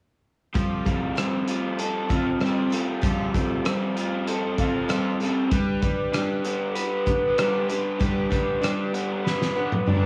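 The recording carries the worn, warbling character of old cassette tape, with a gentle pitch drift, light reverb and a sense of studio ambience around the players. It is a short folk rock and heartland rock excerpt at 96 BPM in a straight 4/4, with an open-road, nostalgic mood. A bright, shimmering picked twelve-string acoustic guitar provides octave-doubled accompaniment, while a raw garage guitar, electric, warm, overdriven and double-tracked with a lo-fi edge, carries the riff up front. A loose indie drum kit sits forward in a pumping studio room, its fat snare and punchy kick joined by hi-hat, rim clicks and toms. The harmony moves from Fadd9 to G at 5.5 seconds, and the drums close the passage with a fill from 9.2 seconds.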